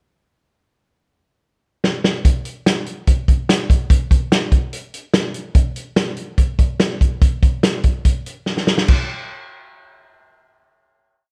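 Restless and wistful, this short, complete indie pop piece moves at a straight 144 BPM in 4/4, carried entirely by a vintage acoustic drum kit. The kit enters with a fill at 1.8 seconds to close out the pickup bar, then settles into a brisk indie backbeat through the verse from kick, snare, hi-hat and crash cymbal. Its sound is up front and natural, with a punchy kick, a medium-tuned snare, dark cymbals and a rolled-off top that keep the small-room tone mellow. Another fill at 8.5 seconds leads into a final hit, and the drums stop at 9.0 seconds. Light reverb and the worn, warbling character of old cassette tape, with its drifting pitch, give the whole recording a faded, nostalgic haze.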